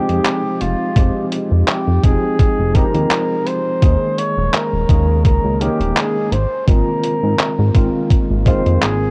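Vaporwave in a hazy, woozy mood, this short cut from a longer piece drifts over a gentle swung groove. A mellow flugelhorn carries the melody with light vibrato, sounding distant and roomy in a classical solo style and trailed by tape echo. A slightly out-of-tune tine electric piano accompanies it up front, clean yet worn and heard as if through built-in speakers, bathed in lush chorus as the harmony moves from Fm9 to Eb7sus4 and then Ab69. Underneath, a glossy, nasal chorused synth bass with a plucked filter and fast attack sits prominently, joined by a detuned 8-bit drum machine of handclaps and hi-hat, and from 1.0 seconds a thumpy electronic kick that stands out front. The whole recording carries light reverb and the warble of worn cassette tape, its pitch drifting woozily.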